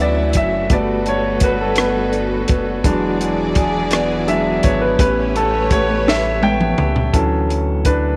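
Slow six-eight R&B in D major at 56 BPM, tender and sensual, where an up-front concert grand piano with a clear, naturally sustained tone and deep low end carries the lead over a Dmaj9, Gmaj7, E7, A9 progression that returns to Dmaj9. Lush, bowed studio strings with vibrato hold sustained chords until 7.1 seconds, while a round, dark analog bass anchors the low end and a slightly broken-up, picked electric guitar plays a second line in the background. A compact, dry cocktail drum kit with a punchy kick and high-tuned snare sits up front and plays a fill from 6.1 seconds, the whole mix lightly touched by reverb and tape saturation in this short cut from a longer piece.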